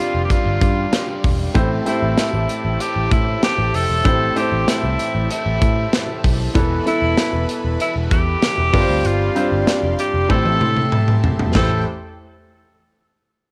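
Cassette tape grain and a light room reverb give this short cut from a longer 1980s-style pop piece an urgent, nostalgic feel, set at 96 BPM in a straight 4/4 in A minor. Up front, a clear tenor saxophone sings the solo melody with scooped notes in a vintage pop style, while a polished concert grand piano with deep bass and short sustain and a biting, double-tracked overdriven guitar with subtle chorus fill in the accompaniment, the guitar sitting in the background. Behind them, a brassy, detuned sawtooth pad with a soft attack and filter swell holds sustained chords under chorus, and a dark, round, foam-muted picked bass anchors the low end from 0.1 seconds. A punchy, mid-forward studio drum kit with a medium-tuned snare and rolled-off top sits up front from 0.3 seconds, using kick, snare, hi-hat, crash, toms and tambourine, and a drum fill from 10.3 seconds leads toward the next section. 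The harmony moves from G7sus4 through Am7 and Esus4 and back, with plate reverb on the saxophone, piano, guitar and pad, and tape colour on those parts and the drums.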